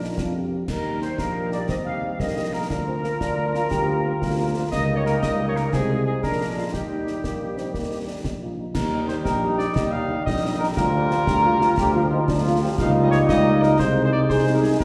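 The tuba sits up front in this festive, rousing military-style march for wind band, anchoring the bass with a soft attack. Above it, a distant, roomy cornet carries the melody in Eb major with vibrato, at 119 BPM in a straight 6/8, and this passage is cut from a longer piece. A clear euphonium with light vibrato and a close-miked flute section with a pure, bright tone both play second lines, and the flutes drop out at 8.2 s. Underneath, a very quiet, mellow French horn section provides accompaniment while a tight trombone section holds sustained chords in the background. Concert snare drum, concert bass drum and clash cymbals enter at 0.2 s, sounding close and dry with dark cymbals. The strain is heard twice against a wet scoring-stage reverb, with the band placed further back in the room.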